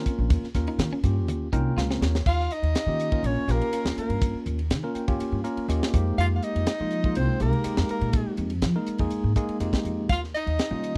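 Slick and soaring, this electric jazz fusion excerpt at 122 BPM in Eb mixolydian opens with bell-like tine electric piano, brief lush-chorused clean guitar stabs that stop at 2.1 seconds, a tight funk drum kit with a high-tuned snare and a woody, dark pizzicato upright bass up front, before a soprano saxophone melody with light vibrato and a breathy, scooped tenor saxophone second line enter at 2.3 seconds over Eb9 and Fm11 harmony, while the piano adds fills in a dry, close small-room sound.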